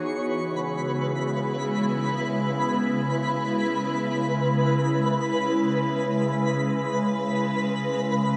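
A huge, wet ambient reverb with a decay of 9.3 seconds surrounds this dark, warm production, giving the short excerpt a reflective and spacious mood. Cut from a longer ambient piece in free time and C# minor, tuned to A4 = 439 Hz, it rests on a single C#m7 chord from 0.1 seconds. An evolving wavetable pad sits up front with sustained chords between B2 and B4, its detuned unison tone morphing with ring modulation, ensemble chorus, phaser and its own reverb, bright and slow to bloom with a long release. Above it, a twinkling granular texture sparkles between B4 and C#6, its FM tone lifted by an octave-up shimmer and washed in its own reverb. Both parts sound together from the start through 8.4 seconds, suspended in one unhurried, glowing chord.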